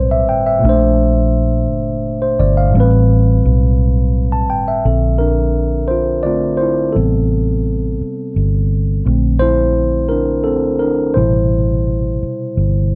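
A mellow tine electric piano and a dark, foam-muted electric bass open together on an Am9 chord, setting up a slow, sultry R&B groove in a straight six-eight. The piano sits up front with a clean tone heard through its built-in speakers, bathed in plate reverb and spanning a broad register as it supplies the accompaniment. Beneath it, the vintage fingered bass is round, punchy and amped, holding to a narrow low range throughout. The harmony rocks back and forth between Am9 and Bbmaj9, giving the passage a yearning, unresolved pull. At 4.8 seconds the electric piano moves into a solo that carries on until this fragment of a longer piece breaks off at 12.9 seconds, all within a light room reverb.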